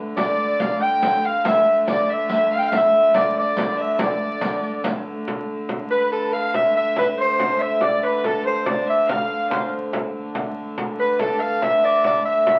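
A medieval dance in 6/8 at 94 BPM, this driving, ancient-sounding passage in D dorian is cut from a longer piece and has a straight feel. A breathy soprano saxophone carries the melody up front, its whispered, intimate tone marked by vibrato, scooped notes and a soft attack in a pop style. Alongside it, a bowed fiddle with a biting, nasal edge and a smooth top plays a second line, while a fingerpicked concert harp rings in the background with another line. A wheel-bowed hurdy-gurdy holds a reedy, boxy drone in the low register from the very start. A small, compressed frame drum played with soft hands drives the rhythm, joined by a distant riq with bright jingles until 5.0 s, shortly before the second section begins at 5.3 s. The whole is heard through a wet club reverb and the crackle of a very old 78 rpm record.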